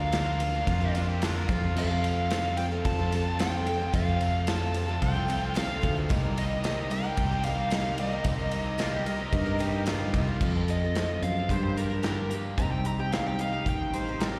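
Folk rock with a heartland rock streak, this dusty, wistful excerpt moves at a steady, straight mid-tempo pulse and sounds like a live gig heard through the venue's PA, with a light recital-hall reverb around it. A bluesy, distorted lead guitar carries the melody high in its range with slapback echo and analog delay, and from 10.4 seconds it takes a solo over a shift to new chords. Beneath it, a bright, shimmering twelve-string acoustic guitar picks out octave-doubled accompaniment, while a crunchy, double-tracked overdriven guitar plays a riff in the background. A round, up-front fingered electric bass and a natural country drum kit with a punchy kick, medium-tuned snare, hi-hat, ride and crash hold the groove, joined by a jingly, very quiet tambourine until 10.2 seconds. A mellow, smooth harmonica adds a brief second line in short phrases, the first arriving at 0.7 seconds, with slapback echo on its tone.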